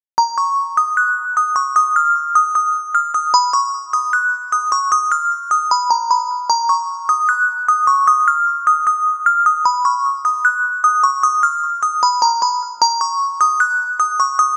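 A moderate, lush hall reverb with a 2.7-second tail surrounds this short hip hop fragment, lending it a spacious, brooding darkness. A single delicate synth tine bell plays alone from 0.2 to 14.5 seconds, its FM tone tinkling and bright, with fast attacks that decay into the room. The part sits up front and stays high, between Bb5 and Gb6, colored by chorus, phaser, delay and a low-pass filter. The piece is in Eb minor at 152 BPM in 4/4 with a half-time feel, tuned to A4 = 439 Hz. A new section begins at 6.5 seconds, and the passage is cut from a longer piece.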